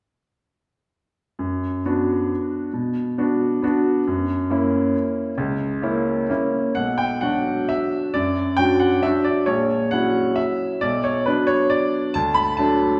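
A solo grand piano carries this wistful, elegant classical waltz in B minor, its brilliant tone ringing with long sustain across a range from A#1 up to B5. The piece moves in 3/4 at roughly 121 to 144 BPM, with a rubato feel that lets the pulse breathe. The piano enters at 1.4 seconds, opening on Bm/F# and leaning toward F#7 before a second passage begins at 6.8 seconds, settling on Bm. That later phrase passes through F#7/A# and back to Bm, then turns to D shortly before the piano stops at 13.0 seconds. A wet recital-hall reverb surrounds the instrument, and the listener seems placed further back in the room, giving this brief cut from a longer piece a spacious, graceful air.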